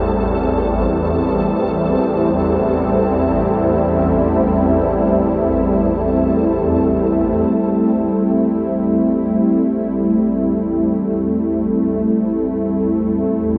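Drenched in a huge, dreamy reverb, this unsettling dark ambient drone sets a bright, airy sawtooth pad with chorus up front over a low, swarming, wave-folded drone that feels tense and detuned, while a flickering, grainy texture glints high above until it drops away at 7.5 seconds.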